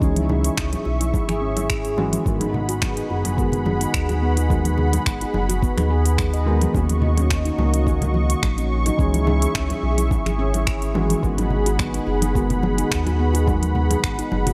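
A gently swung sixteenth-note groove in 4/4 carries this meditative, mystical slice of organic downtempo, cut from a longer piece. A soft, overdriven electronic kick anchors the pulse beside an overdriven electronic kit of cabasa, congas, finger snaps and crisp hi-hats, while bright, close-sounding congas and bongos join at 0.2 seconds from further back. At the centre, a handpan spins ringing, mellow arpeggios under soft fingertips, its dry, close-miked tone passed through a low-pass filter sweep and a digital delay. Beneath it, a felt-muted upright piano plays intimate, short-sustained accompaniment with audible action noise, treated with digital delay and sidechain pumping, while above, a detuned sawtooth analog pad holds slow-attack chords thickened by chorus and also pumping. The most prominent part is a dark, smooth synth bass with a sawtooth and square-wave edge, ring modulation and sidechain pumping, moving through a C#m, G#m7 and D#m7 cycle inside a light, small-room ambience.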